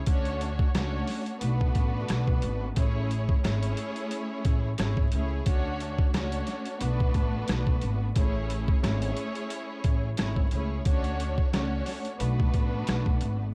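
Boom-bap hip hop with a nostalgic yet confident mood, set in 4/4 with a lightly swung sixteenth-note feel. This brief cut from a longer piece opens on a rich, lush studio string section, bowed with vibrato and sitting distant in the mix, its tone narrowed by high- and low-pass filtering as it carries the accompaniment. From 0.1 seconds an upright bass enters with woody, pizzicato notes in a low register, given a touch of transformer saturation. The sampler-style drum kit sits up front, pitched down and compressed, with a thumpy kick, a medium-tuned snare, rim clicks and hi-hats, all roughened by vintage 12-bit grit and a tape-like warmth. The harmony cycles through Dmaj7, Bm7 and Amaj7, and the whole piece has a dry, gritty hardware sound in a small room, with vinyl crackle beneath it.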